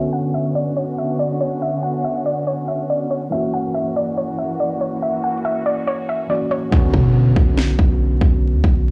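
Hip hop trap in a brooding, eerie half-time feel, cut from a longer piece, where a soft, round pluck melody with chorus and slapback echo sits over a worn, slightly out-of-tune tine electric piano and veiled, con sordino chamber strings beneath a filter sweep, while a trap kit with a hard-clipped kick, sharp snare, metallic hats and finger snaps sits up front until, at 6.7 seconds, the pluck and strings stop, the hats drop out, an electronic impact hits and a deep, boomy 808 bass enters, the whole mix sounding blown-out and overdriven with vinyl crackle and light reverb.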